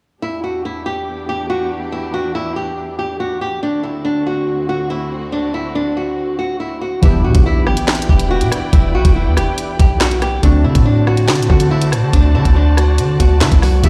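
Cold and dark, this drill excerpt runs at 141 BPM in a half-time feel in E minor, moving between Em7 and D7. It opens with a dark, fingerpicked flamenco guitar carrying the melody up front with a digital delay, over veiled, con sordino strings holding sustained bowed chords with vibrato. At 7.0 seconds the beat drops in: a tape-tinged drill kit with knocking kick, sharp snare, handclaps, hi-hat and rim click sits up front beside a punchy, heavy 808-style bass with a sine body and noise layer. Warbly lo-fi synth keys join at the same moment in the background, their detuned, wave-folded tone softened by chorus into a mellow, nostalgic haze. A very quiet electronic impact marks the shift at 7.2 seconds. The mix is dry, yet it sounds as if played on a big sound system in a bare stone room.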